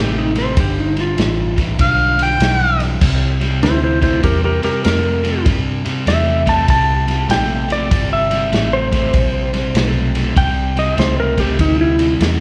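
A soulful, gritty electric blues shuffle opens with a dark, clean, compressed lap steel guitar playing a second line up front with slapback echo. Beneath it, an overdriven semi-hollow guitar picks a low riff, and a round, foam-muted fingered electric bass holds the bottom. A vintage drum kit enters at 0.4 s with a muffled, lo-fi small-room sound: a punchy kick, a medium-tuned snare, crash and ride cymbals, and a rolled-off top. From 1.8 to 2.8 s, an amplified, overdriven harmonica steps up front for a brief jazz-style phrase, with light vibrato, tongue slaps, scooped notes and slapback echo. From 3.0 s, an electric slide guitar solo runs until the end. The whole excerpt sounds like a live gig heard through the venue's PA, with club reverb, light reverb and studio ambience, and it is cut from a longer piece.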